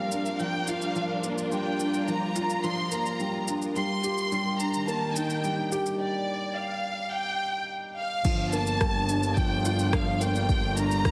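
Piano and strings electronica in G minor at 107 BPM, hypnotic and cinematic, this excerpt builds over a felt-muted upright piano riff with audible action noise and digital delay, an expressive violin section melody with portamento, dark sul tasto string chords moving between Gm7 and Ebmaj7, and an overdriven deep house kit of crash, rim click and shaker, before a break from 6.0 seconds leads at 8.2 seconds into a drop where an earthy bowed double bass section with sidechain pumping and an overdriven electronic kick join, set in a lush hall reverb.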